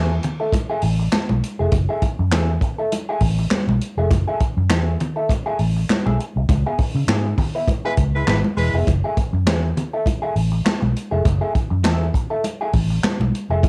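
This cool, sly funk piece, cut from a longer work, carries the light reverb and lo-fi character of a home cassette recording. A dark, foam-muted fingered electric bass sits up front with a round, amped tone, while an electric guitar at the edge of break-up, picked and compressed through wah and tape, plays accompaniment over a rootless F#m9. From 0.2 seconds a swinging big-band drum kit, distant and roomy with a punchy kick, medium-tuned snare, hi-hat and handclaps, plays with a swung sixteenth-note feel, joined by thick-skinned, band-limited vintage congas. The band hits an accent at 6.5 seconds as the harmony shifts to C#m7, and a mellow horn section with light vibrato and a smooth top adds a brief second line from 7.8 seconds, colored by tube saturation. The music then returns to F#m9.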